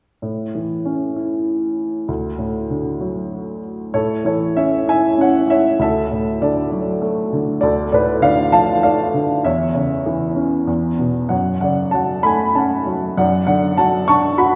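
Classical solo piano in a sunny, relaxed, lyrical mood, played with rubato in three-four time on a worn, woody, slightly detuned upright that sits in a lush scoring-stage reverb, its harmonies drifting from bright major chords through a shadowed D minor into F-sharp minor and Bm9/F# in this short passage cut from a longer piece.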